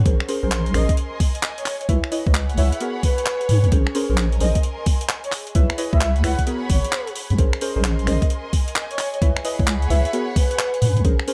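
UK garage in a swung two-step groove, late-night and soulful, built on an overdriven, knocking electronic kick and a gritty, pitched-up breakbeat sampler kit of finger snaps, handclaps and hi-hat, with a deep, saturated wobble bass pumping up front beneath a loop of minor ninth chords. Mellow chord stabs carry a warbling vintage 12-bit grit and chorus, while a distant, bowed chamber string section adds dark vibrato behind them. From 0.7 seconds a breathy, flute-like synth lead floats over the mix with subtle chorus, vibrato and dub echo, all in a dry, close room.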